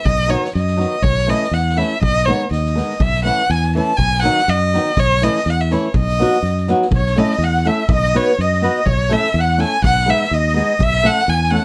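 Balkan folk in a festive, exuberant wedding-band style at 123 BPM in swung 2/4, this excerpt sets a rich, boxy bowed violin melody with vibrato and portamento up front over growly, punchy electric bass, fingerpicked flamenco guitar with audible finger squeak, and a distant, roomy soft-mallet drum kit, while a reedy, shimmering musette accordion slips in behind at 6.9 seconds, all circling a B pedal beneath A and G#m chords in light reverb.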